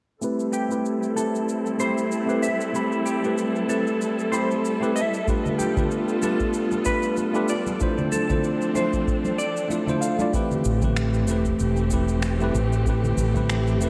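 Smooth and wistful, this sunset chillout excerpt in A minor drifts at 95 BPM with a lightly swung feel, as a bright, up-front tine electric piano and lush, bowed studio strings open under filter sweeps alongside tape-warm electronic cabasa and finger snaps, a dark, fingered clean electric guitar weaves chorused, delayed arpeggios from 0.5 seconds, a deep analog kick and thick-skinned congas in the background join at about 5.3 seconds, and a round, dark fretless bass enters up front at 10.7 seconds, all bathed in a dreamy plate reverb.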